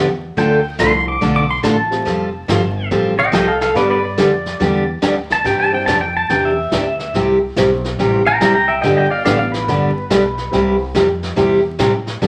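A swinging 4/4 at 142 BPM drives this playful western swing excerpt in C major, with a full-bodied, up-front dreadnought acoustic guitar picking the accompaniment alongside growly, woody pizzicato upright bass and a vintage brush kit with a punchy kick and rolled-off top. From 0.4 seconds a clean, compressed pedal steel guitar takes the solo up front, played with fingerpicks, slide and volume swells until 10.8 seconds. A dark, mellow, slightly detuned upright piano sits in the background in two passages, and the whole is set in a studio reverb with vinyl crackle over chords moving from Dm through Fadd9, G and Cadd9 to C.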